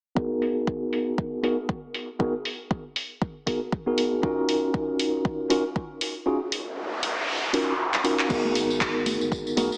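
Deep and warm, this swung deep house fragment centres on a mellow tine electric piano playing up-front minor-ninth stabs, pumping against the sidechain, treated with tape echo and a filter sweep, over a layered electronic kick and a punchy, tape-toned analog drum machine with low-pass-filtered crash, handclaps, hi-hat and tambourine. The kick drops out at 6.3 seconds while an electronic noise sweep enters at 6.5 seconds and a drum fill follows; at 8.3 seconds a round, sine-like sub bass with tube saturation and sidechain pumping enters in the background, joined by very quiet, bright, close and dry congas. The whole mix sits in a wet echo-chamber ambience with a heavily compressed, small-speaker radio sound.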